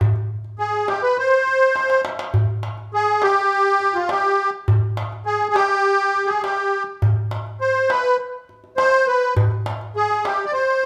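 Soulful and melancholic, this short cut from a longer Arabic maqam ensemble piece moves at 102 BPM in a straight 4/4, tuned to A4 = 443 Hz. A metal-shell darbuka opens at 0.0 seconds, crisp, deep and large in tone, struck with hard hands and placed up front with an acoustic, live-room character. The musette accordion enters at 0.6 seconds to carry the melody between F4 and D5, its reedy, dark voice smooth and shimmering from the musette tuning, and it also sits up front, somewhat louder than the drum. A brief darbuka fill arrives at 1.8 seconds. The band plays live in one room, and a moderate large-studio reverb lends the sound a one-second tail.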